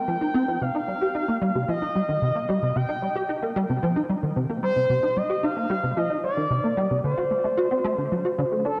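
Cosmic and hypnotic, this short fragment of ambient, sequencer-driven space music moves at 112 BPM in a straight 4/4 in C dorian, tuned to A4 = 435 Hz: a punchy, funky analog bass riff with a detuned, wave-folded filter pluck, ensemble chorus, vintage 12-bit sampler grit and analog delay sits up front beside a smooth, expressive portamento lead melody with vibrato, a soft attack, subtle chorus and analog delay, the two set in a wet plate reverb over chords moving from F5 to Cm7 and then to D7 at 7.0 seconds.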